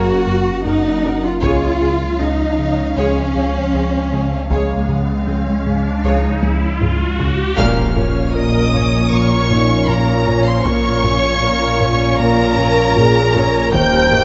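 Strings lead the passage from its first moment: a lush, bowed violin section carries an expressive, vibrato-rich melody high above a smoother second violin line, while violas sit distant in the background and a prominent cello section anchors the low end, joined almost at once by a dark, very quiet double bass section. This is a cinematic hybrid of orchestra and electronics in Bb minor at 78 BPM, relentless and futuristic in mood, built on chords moving from Gb to Db before settling on Bb minor. Beneath the strings, and sounding from the very start, a mellow French horn section and a very quiet, clear trombone section hold sustained chords, and an ethereal, airy pad with ensemble chorus and built-in reverb adds a detuned, shimmering haze. A ringing, harp-like synth pluck traces soft arpeggios, while a smooth sawtooth synth bass riff and a deep, clean sine sub bass thicken the foundation. 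A close, dry taiko ensemble struck with hard sticks enters at 1.4 seconds, and an electronic riser builds from 4.1 seconds, with a drum fill leading to a full-band accent and impact at 7.6 seconds as the harmony lands on Bb minor. The moderate scoring-stage reverb gives the whole a rounded, dark-edged sheen, and the cut is taken from a longer piece.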